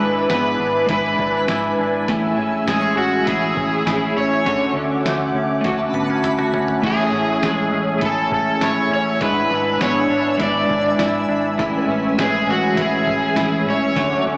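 Ethereal, hazy dream pop in a straight 4/4, where a bright, overdriven slide guitar carries the melody up front through tape echo over a background electric guitar at the edge of break-up with tremolo, a smooth detuned sawtooth analog pad, clean hollow-body arpeggios swathed in chorus and echo, a dark, round foam-muted bass, a muffled, pitched-down sampler-style drum kit with a fill from 5.6 to 6.8 seconds, and a twinkling granular shimmer, all cycling through seventh chords in a wet hall reverb heard as if through small speakers in a stone room, cut from a longer piece.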